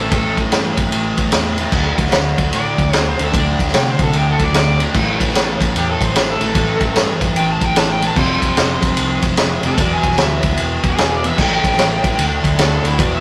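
A brooding, gritty blues rock and southern rock groove in A minor opens with an overdriven slide guitar soloing over a bright, double-tracked fuzz guitar riff, a round, foam-muted fingered bass and an up-front vintage drum kit with dark cymbals, a high-tuned snare and a punchy kick. At 149 BPM in 4/4 with a swung eighth-note feel, the slide line sits over chords moving from A5 to D5 and back to A5, then F5 and E5 before returning to A5 and D5 by 12.2 seconds. The rough rehearsal-room sound carries tube saturation, moderate studio reverb and lossy compression artefacts, in this short cut from a longer piece.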